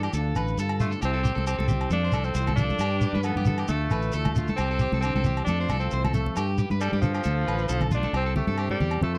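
A straight 4/4 groove at 135 BPM drives this carefree highlife guitar band passage in C major, cut from a longer piece. A punchy fingered electric bass sits up front between A1 and G2. Around it, a close, grainy shekere and ringing agogo bells in the background keep time, and from 1.4 s damped, high-tuned congas played with soft hands join in. Two slightly broken-up, picked electric guitars share the harmony: a twangy accompaniment part with subtle chorus spanning C3 to C5, and a darker arpeggio part tucked behind it between F4 and C5. Over them a raspy, gritty tenor saxophone carries the solo melody from F3 to D4, with vibrato and scooped notes in a vintage pop style. The chords cycle through Dm, C, F and G before settling on C at 8.1 s as the shekere drops out, heard through a dry, close 1970s-style studio recording with little reverb.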